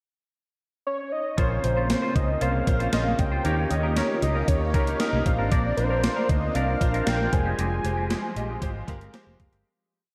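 Drenched in a lush hall reverb, this dreamy 1980s-style pop piece feels nostalgic and urgent, opening at 0.9 seconds with a thick, detuned unison synth lead that carries a motif-based melody with vibrato and tape echo. From 1.4 seconds a gated digital drum machine with a thumpy kick and big backbeat sits up front beside a round, foam-muted fingered bass playing a syncopated pop-funk line, while a clear concert grand piano plays eighth-note chords through analog chorus. Behind them, a swirling phased string machine holds bright sustained chords and a twangy, compressed clean electric guitar adds funk-style rhythm, until the piece fades out from 7.6 seconds.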